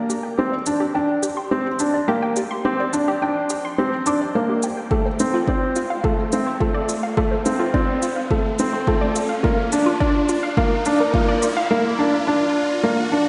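A steady, straight 4/4 pulse at 106 BPM comes from a layered electronic shaker, with a punchy, up-front kick joining at 4.9 seconds in this hypnotic, melancholic piano-and-strings electronica excerpt that builds throughout. A felt-muted upright piano repeats an intimate, mellow riff through shimmer reverb and diffuse delay, while a bright, detuned analog pluck spins arpeggios under a filter sweep with chorus and sidechain pumping, and an electronic riser runs beneath them. The harmony moves through Csus2, Dm7 and Bb, and the dreamy mix is soaked in a lush hall reverb with its top end rolled off.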